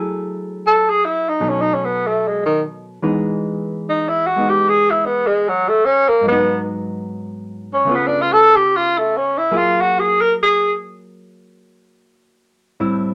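A clean, dark hollow-body electric guitar opens this wistful, smoky jazz ballad excerpt, fingered as accompaniment in a relaxed swing. At 0.7 seconds a breathy tenor saxophone enters up front with the melody, its mellow subtone tone carrying a whispered, intimate quality and a vintage character. The saxophone's soft attacks, scooped notes and gentle vibrato give the solo a tender, unhurried jazz voice, while the guitar sits well beneath it in the mix. The harmony drifts through rich extended chords, passing an augmented seventh before settling on a major ninth. The saxophone falls silent at 10.7 seconds, leaving the guitar alone until the fragment is cut off at 13.1 seconds, all within a moderate studio reverb.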